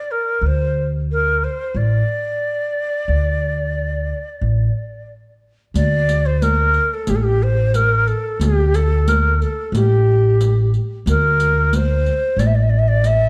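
Turkish makam ensemble music, soulful and hypnotic, in a steady straight four: a breathy, end-blown reed-cane ney carries the melody with vibrato and a crisp attack, joined at 0.4 s by an up-front pizzicato upright bass whose steel strings sound woody and acoustic. At 5.8 s a riq enters lower in the mix, its dark jingles compressed and saturated. The dark, warm production sits in a moderate recital-hall reverb, and this excerpt is cut from a longer piece.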